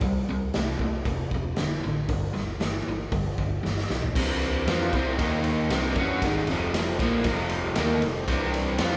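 A live-in-one-room sound with a moderate large studio reverb frames this swaggering, driving blues rock and southern rock passage, where a bright, double-tracked crunchy overdriven guitar riff with spring reverb sits up front over a round, foam-muted fingered electric bass and a saturated garage drum kit with a punchy kick and rolled-off top, until a drum fill at 3.6 seconds leads into the next section and a thick, gritty tonewheel organ enters in the background at 4.1 seconds with sustained chords through a slow rotary speaker and chorus vibrato.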